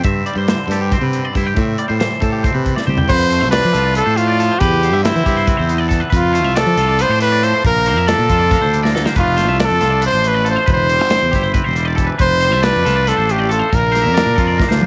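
Math rock and midwest emo in a playful, wistful 7/8 at 277 BPM, where two twangy electric guitars, one comping and one picking spring-reverbed arpeggios, ride over a growly fuzz bass and a tight studio kit with bright cymbals before a brilliant, punchy trumpet with light vibrato and scooped notes takes the melody up front at 3.1 seconds, all with a dry, cassette-tinged home-recorded sound in this piece cut from a longer work.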